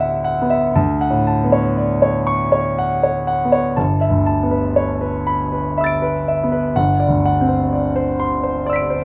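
A clear, up-front concert grand piano opens this serene, hazy fragment of impressionist solo piano, drifting in a rubato triple metre through lush chords such as D69, A69/D, G69 and D13/G, its deep bass and long sustain ringing naturally in light reverb, tuned to A4 = 437 Hz.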